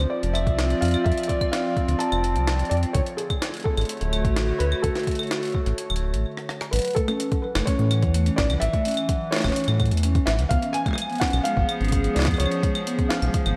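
IDM at 127 BPM, glitchy and playful, with a muted felt upright piano carrying the melody through lush chorus and tape echo, a warbling lo-fi pad holding chords under chorus and phaser, a round, deep analog bass up front, a gritty, pitched-up jungle sampler kit of claves, hi-hat, rim click, snare and toms, an overdriven electronic kick entering at 0.5 s, and a soft-mallet vibraphone adding ringing arpeggios with analog delay from 6.7 s, after a brief stop and drum fill, all set in a dreamy hall-reverb haze over chords moving from F6 and Dmaj7 to A6 and C#7.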